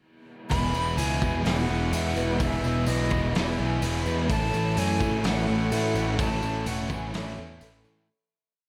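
At 0.5 seconds the whole band comes in together on an E major chord, starting a wistful, hazy shoegaze and dream pop piece at 127 BPM in a straight 4/4. A loose indie drum kit with a fat snare, punchy kick and gritty, rolled-off top sets a half big groove, while an up-front, growly electric bass drives eighth notes underneath and a jingly tambourine sits close in the background. Three overdriven guitars build the wall of sound: a biting one with lush chorus and a hollow-bodied semi-hollow one with reverse reverb strum chords with whammy-bar dips, and a very quiet, double-tracked crunchy guitar pushes eighth-note power chords. Above them a breathy jazz flute with crisp chiff, vibrato and tape echo carries a hook-based melody. A boxy, shimmering twelve-string acoustic plays an octave-doubled arpeggio ostinato through lush chorus and tape echo, and a very quiet, vintage sawtooth string machine holds a mellow ensemble pad. 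The harmony moves to A6 at 4.3 seconds, and the piece fades out from 6.2 to 8.1 seconds in light reverb.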